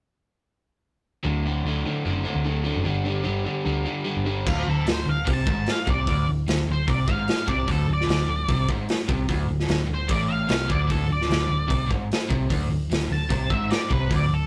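Blues rock in a power-trio vein with a southern rock edge, this swaggering, raunchy cut from a longer piece drives along at 149 BPM in a straight 4/4. An overdriven, bright, double-tracked electric guitar opens with a riff alongside a round, foam-muted bass, moving from D to G5 in the first few seconds. At 4.5 seconds the harmony drops away and a dark octave-fuzz lead guitar takes up the melody, while a raw garage drum kit joins with crash, hi-hat, punchy kick and a medium-tuned snare. The drums sit up front with a gritty, saturated character, a rolled-off top and a pumping small-room feel. The whole take has the rough quality of a rehearsal-room recording with tube saturation and a moderate studio reverb.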